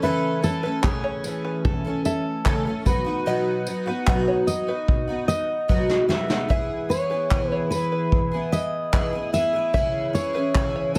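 Sunny and easy-going, this short acoustic pop excerpt moves at an unhurried, straight pace in 4/4. A full-bodied fingerpicked steel-string guitar with fresh strings carries the melody up front, touched with delay, while a picked twelve-string guitar, double-tracked and octave-doubled, supplies shimmering, bright accompaniment complete with audible finger squeak. Set in the background, an open-back banjo adds twangy, plunky arpeggios with its own delay. A soft brush drum kit enters at 0.4 seconds with a punchy kick, medium-tuned snare, tambourine and handclaps, sounding distant and roomy, and it plays a fill from 5.7 to 6.5 seconds that leads into the arrival of E. The chords move from A/C# through B and E to C#m, all wrapped in light reverb.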